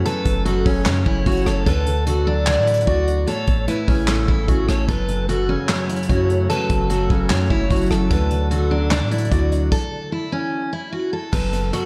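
Trap hip hop with a dark, melancholic half-time feel, where a full-bodied picked steel-string acoustic guitar carries the melody up front through a low-pass filter and tape echo, a smooth vintage grand piano and a deep, sine-toned 808 bass sustain beneath, a breathy bamboo pan flute with vibrato and an unsteady tone adds a second line, a soft brush drum kit with punchy kick, rim clicks, handclaps, hi-hat and crash keeps time, and a glassy FM pad hovers in the background from 5.7 to 9.7 s before the chords drop out, all set in a dreamy, reverb-soaked mix.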